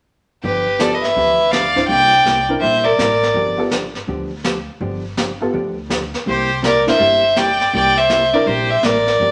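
A moderate studio reverb gives this short country western swing cut a roomy, down-home glow, with the lead fiddle sitting up front. At 164 BPM in 4/4 with a swung eighth-note feel, the mood is playful, and the harmony moves through G9, C9 and G7 before returning to C9 at 6.3 seconds. Two bowed fiddles carry the tune in two phrases, the first from 0.4 to about 3.6 seconds and the second from 6.3 seconds: the focused, smooth-topped lead takes the melody between B4 and G5, while an earthy second fiddle, softer in the mix, plays a lower second line, both with light vibrato. Underneath, a dark, clean, compressed hollow-body electric guitar plays fingered accompaniment, and a pizzicato upright bass adds a woody, thumpy low end throughout. A vintage brush drum kit with a high-tuned snare, punchy kick and rolled-off top keeps time in a studio-room sound. Entering at 0.8 seconds, a detuned, jangly honky-tonk upright piano with short sustain adds a woody vintage colour in the middle register.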